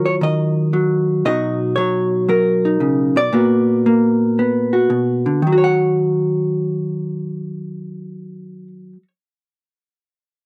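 Solo jazz with a smoky, late-night mood, swinging at 115 BPM in Eb minor, this short cut from a longer piece features a vintage hollow-body electric guitar played alone from 0.0 to 9.1 s. Its clean, picked tone is dark and compressed, sitting up front in a dry, close 1970s-style studio sound with light reverb. The guitar moves through Ebmadd9, Bmaj7 and Bb before settling on Ebm7, with a tuning set a touch below standard pitch.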